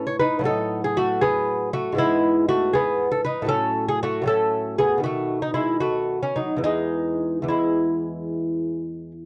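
A classical, baroque-style dance in 12/8 and E major, this serene, radiant fragment of a longer piece moves with a gently rubato lilt at around 70-81 dotted-quarter beats per minute. A solo lute, fingerpicked on gut double strings with some octave-doubled courses, sounds delicate and close up front across a range from E2 to C#5. The dry, intimate 1970s-style studio sound carries its harmony from B7/A through E/G#, F#m/A and B7 before settling on E at 6.6 seconds.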